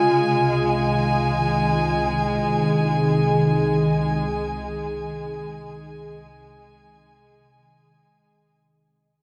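In free time, this ambient passage unfolds as a serene, luminous drift, cut from a longer piece and fading out across its full 8.6 seconds. A glassy FM pad carries the sustained chords from the low register up high, its slow attack and long release giving it an ethereal, full-bodied presence softened by ensemble chorus and its own built-in reverb. Alongside it, a studio violin section adds bowed texture from start to finish, its tone clear and smooth with light vibrato and an even, ensemble blend. Both parts sit up front, the pad mellow and the strings lucid against it. An Ab/C chord arrives at 0.3 seconds. The production is dark and warm, bathed in a huge, wet ambient reverb with a decay of 7.9 seconds that makes the sound seem to hang in a vast space.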